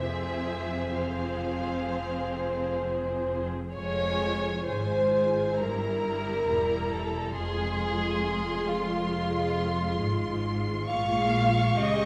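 Classical slow romantic movement for string orchestra in F minor, tender and unhurried at 63-69 BPM with rubato, where a smooth, lush violin section carries the high melody over a darker, woody chamber violin line up front, expressive soft-attack violas, focused cellos set in the background and dark double basses, all bowed with vibrato through a wet recital-hall reverb as the harmony moves from Fm through Edim/G to Bbm7 in this 12.1-second excerpt.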